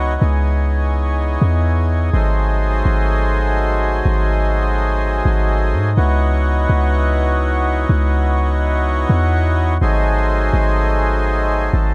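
Atmospheric cloud-rap hip hop with a spacious, ethereal half-time feel, where a reedy, full mellow accordion holds close-miked, dry sustained chords shifting between C#m11 and G#7b9 over a deep, boomy 808-style bass with a fast attack and decaying sine tone, both parts up front throughout the 11.9-second excerpt in a light small-room ambience.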